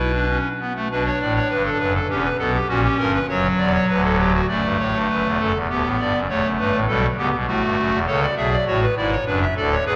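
A pipe organ voiced with a hollow clarinet reed stop carries this short, up-front solo, a baroque-style three-part fugue cut from a longer piece. The mood is elegant and lively, moving at 100 BPM in a straight 3/4, opening in B minor before turning to D major at 4.5 s. The single instrument spans a broad register from D1 up to E5, its romantic solo voicing giving the counterpoint a reedy character. Harmonies pass through chords such as Em, F#7 and A7/E, settling on D/F# near the close at 9.3 s. The sound sits in a wet church reverb with a long 3.8-second decay, and the whole recording carries the worn, warbling pitch drift of old cassette tape.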